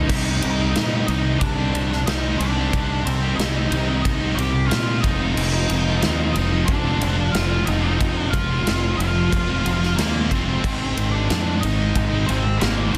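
Growly, overdriven fingered electric bass sits up front in this brooding, dark slice of quiet-loud alternative rock, its fuzz-laden tone bright and amped. A big acoustic rock kit, also forward, drives the straight 4/4 with a punchy kick, a medium-tuned snare, and bright crash and ride cymbals in a natural big-room sound. Behind them, a high-gain distorted guitar and a shadowy, compressed fuzz guitar both grind out picked riffs, while an octave-fuzz lead guitar carries the melody with a murky, slapback-echoed edge. The harmony moves from C minor to F minor at 5.0 seconds and lands on an Abadd9 chord at 10.6 seconds. Dry and dense, the mix is pressed hard by a heavily limited modern master.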